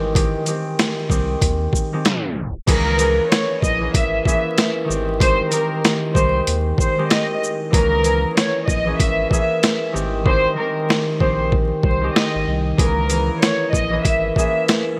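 Boom-bap hip-hop at 95 BPM with a confident, swung 16th-note feel: a bright, ringing fingerpicked concert harp with a cassette-tape tint and a round sine sub bass carry Abmaj7 and Dbm6 chords, a gritty, pitched-down sampler kit thumps with a high-tuned snare, a tape stop at 2.0 seconds ushers in a floating, sul tasto violin section melody at 2.7 seconds, and the hi-hats drop out between 10.3 and 12.8 seconds, all under plate reverb, vinyl crackle and glossy 1980s-style digital sheen in this cut from a longer piece.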